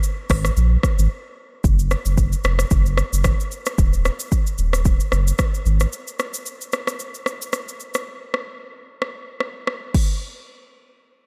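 Afrobeats at 112 BPM with a light sixteenth-note swing, romantic and joyful, this short cut from a longer piece pairs an up-front electronic afro-pop drum kit of deep kick, smooth hi-hat, rim click, shaker and crash with a thick, saturated triangle sub bass that sustains low from 0.3 to 5.9 seconds, all dry and close, with a brief break at 1.1 seconds and the kick dropping out from 8.1 seconds before the drums stop at 10.1 seconds.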